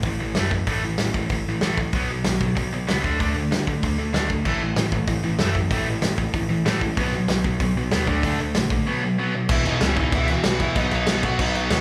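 Recorded live in one room with a large studio's moderate reverb, this rowdy, rebellious punk rock excerpt drives along at 190 BPM: a bright, tight distorted guitar riff and a gritty, saturated indie drum kit with a punchy kick and a rolled-off top sit up front over an overdriven picked electric bass; a hollow-body semi-hollow guitar joins the riff in the background at 4.5 s, and a smooth, dark lead guitar melody with overdrive enters at 9.5 s as the harmony moves to E5.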